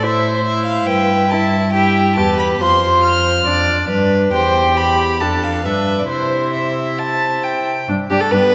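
A cheerful, lively string quartet opens together at 138 BPM in C major in this quick classical-period movement cut from a longer piece, all four players bowing reedy gut strings in period style: a rich, close first violin carries the melody up to F6, an up-front second violin with light vibrato adds a smooth second line, a distant viola fills in the accompaniment, and a dark cello anchors the bass, all set in a wet concert hall reverb with a dulled top end.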